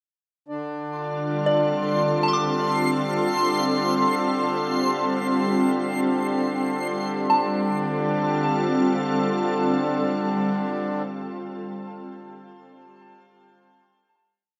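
Floating in free time, this short ambient piece in D minor opens on a Dm7 chord and settles into a spacious, reflective mood. A reedy, breathing pedal harmonium drone enters at 0.5 s alongside a reversed, granular texture that holds a single high C6 with a dreamy, swelling quality until 7.3 s. Up front, a soft additive organ-like pad built from sine and triangle tones with ring modulation lays down slowly shifting sustained chords, its pure, bright sound thickened by ensemble chorus and a shimmer reverb. Further back, a gentle FM synth bell scatters decaying arpeggio notes between D5 and D6, colored by chorus, phaser, tape echo and shimmer reverb, and it lingers until 13.2 s. After a brief opening passage, the music comes to rest on a held final chord from 7.3 s, all of it bathed in a wet concert hall reverb.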